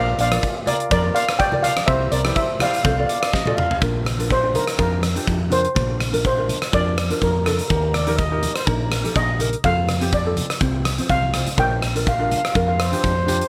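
A lightly swung 4/4 calypso groove at 124 BPM in Bb major drives this festive, carefree excerpt. A shimmering, airy steel pan, played with soft rubber sticks, takes a solo from 3.8 s over thumb-plucked ukulele, a round hollow-body short-scale fingered electric bass, a punchy gated 80s drum kit with a fat snare and fills, and very quiet thick-skinned congas, while a dark trumpet with light vibrato adds brief second-line phrases, such as at 7.9 s, within a moderate studio ambience.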